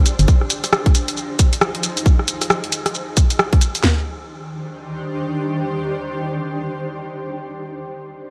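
Soulful and bouncy, this two-step UK garage excerpt at 135 BPM in Eb major swings its sixteenths through a drop, moving from Fm7 to Ebmaj7. Up-front, layered electronic garage drums set a tight kick, cracking snare, handclaps and toms against bright hats, rim clicks and shaker, all in studio reverb, until the hats, rim clicks and shaker fall away at 3.8 seconds and the rest of the kit stops at 4.0 seconds. A cloudy, detuned granular pad with slow attack, analog chorus and sidechain pumping sustains, blurred and evolving, to 7.1 seconds within a light digital ambience.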